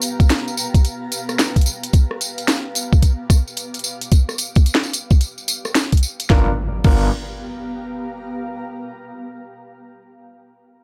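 A dry, gritty hardware sound with little reverb frames this funky, swaggering glitch hop excerpt, set at 110 BPM in 4/4 with a 63% swing on the sixteenths. An overdriven drum and bass kit with a cracking snare, rim clicks, bright hi-hats and crash cymbal opens the excerpt alongside a jingly acoustic tambourine, and a compressed, pitched-down, thumpy electronic kick joins them up front at 0.2 seconds. Beneath them, a cloudy, evolving granular pad drifts between B3 and D6 over a G7#9 chord, blurred by its own reverb and sidechain pumping, and it fades out across the opening section. At 6.3 seconds the music moves into a new section as a polished baby grand piano plays short stabs with tape echo and pumping, while a swirling, thick detuned saw bass holds a low G1 through a phaser. An electronic impact lands shortly after and rings on to the end.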